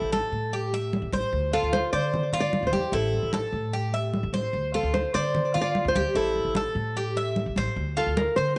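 A full-bodied, fingerpicked nylon-string guitar carries the melody with tape echo in this sultry, danceable Cuban son and guajira excerpt at 149 BPM in D minor, over metallic, up-front picked arpeggios from the double-strung Cuban tres, woody, thumpy pizzicato gut-string upright bass and damped, thick-skinned congas played with soft hands from 0.1 s, all alternating between A5 and Dm7 in an echo-chamber reverb with small-room ambience and a mellow top end.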